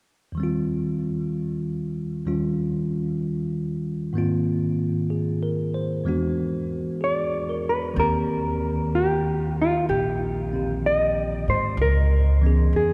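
A slow, swung 4/4 pulse at 63 BPM sets this late-night, tender jazz ballad in Eb major, heard in a short cut from a longer piece, where a bell-like tine electric piano opens alone at 0.3 s with clean, up-front chords moving from Eb6 through Ab69 and E9. A dark, fingered hollow-body electric guitar takes the melody at 7.0 s, and a woody, growly pizzicato upright bass with steel strings joins at 8.0 s as the harmony returns to Eb6 before reaching Dbm7. A wet cathedral reverb with a long 5.3-second tail gives the performance the spacious air of a church or concert hall.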